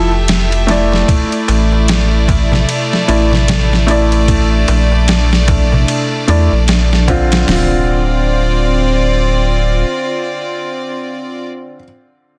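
A felt-muted upright piano, soft and mellow with harmonic tremolo and tape echo, opens this dark, brooding trip hop fragment together with floating bowed violins and a round, deep analog bass sitting up front, as the chords move from Fmaj7 to Asus4. Almost at once, a gritty, pitched-down sampler-style kit with a thumpy kick, overdrive and studio reverb joins a crisp, hard-handed metal darbuka in the background, and both stop around 7.5 seconds as the harmony settles on Dm7. The bass stops at 9.8 seconds, leaving the piano and violins to finish the swung groove in a dense, heavily limited mix.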